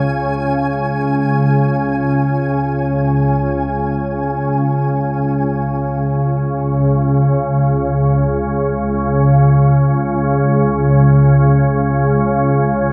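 A calm, organ-like drone sits up front in this dark, unsettling ambient piece, its detuned sine tones sustained from C#2 to C#3 with slow attacks, long releases and a shimmering ensemble chorus. A filter sweep moves across the drone during the first 5.2 seconds, while a flickering, grainy texture hovers high above on G#5, its detuned triangle tone broken into granular particles. That texture sits far back in the mix and drops out at 5.2 seconds, leaving the drone to carry the rest of the passage alone until 12.9 seconds. The music floats in free time, cut from a longer piece, and everything is bathed in a huge, wet reverb with an 8.8-second tail that turns the space into a vast, cavernous haze.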